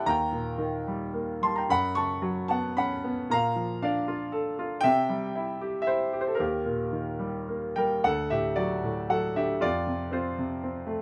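A clear, up-front concert grand piano plays alone throughout this relaxed, sunny fragment of lyrical classical solo piano in a rubato 3/4 at about 103-120 BPM, its deep bass and open, short-sustained tone spanning D2 to C#6 under light reverb as the harmony drifts from Eb through F#sus4, Bbmaj7 and C before shifting to a new passage on D at 8.0 seconds and settling on F5.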